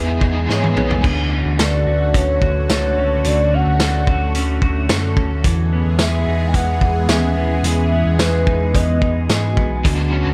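Floating and dreamy, this short dream pop cut at 109 BPM in E major drifts over Emaj7 and Dmaj7 chords, where a hollow, woody clarinet-like synth lead with chorus and analog delay carries the melody until 9.6 s above compressed clean electric guitar arpeggios, a thick detuned unison pad with chorus and phaser, a round sub bass, a mellow vibraphone ringing in the background, brief bursts of tremolo-laden overdriven guitar, and a gritty, punchy vintage drum kit that enters at 0.2 s and plays a fill from 0.5 s, all set in an echo-heavy mix with light studio reverb.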